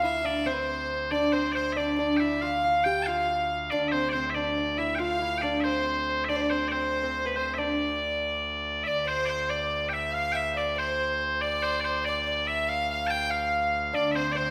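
Ancient and driving, this medieval dance excerpt in D minor moves in a straight 6/8 at 94 BPM and speeds up throughout, with piercing bagpipes carrying the melody up front while a biting, earthy bowed fiddle and a delicate fingerpicked lute with gut double strings play second lines (the lute dropping out at 8.6 seconds and returning at 13.9 seconds) over a thick pipe organ drone on D2, all set in a wet recital hall reverb.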